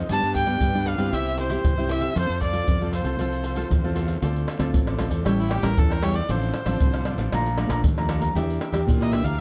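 Joyful and playful, this samba and choro excerpt sets a clear, nasal erhu with light vibrato and portamento over bright, crisp picked cavaquinho, fingerpicked full-bodied nylon-string guitar, a punchy fuzz-overdriven fingered electric bass up front, and tube shaker, tight surdo, pandeiro and tamborim, with the erhu taking a biting, earthy solo from 4.2 seconds as the harmony turns minor in a dark production with light reverb.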